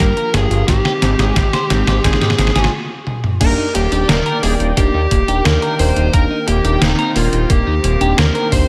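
This nostalgic, cinematic synthwave excerpt opens with everything at once at 88 BPM in a straight 4/4: a dark, fuzz-drenched lead guitar carries the melody through distortion and tape echo, above a fat, thick analog bass that sits up front with a sawtooth-and-square bite, a filter sweep and a moving notch. An electronic kick drum gives a thumpy, sampler-style pulse, joined by a detuned 8-bit digital drum machine whose medium-tuned snare, hi-hat, toms and crash cymbal sound re-recorded in a small room and carry gated reverb, with a drum fill running through the opening seconds. In the background, a soft supersaw holds airy, detuned chords with sidechain pumping and a low-pass filter, while a twangy, bright clean electric guitar picks arpeggios through phaser and delay. A mellow FM electric piano adds round, full-bodied stabs colored by chorus and phaser. The harmony moves from Gm7 to Abmaj7, then a brief stop at 2.7 seconds, broken by a short fill, leads into a new section at 3.4 seconds that settles on Ebmaj7, all under a light reverb.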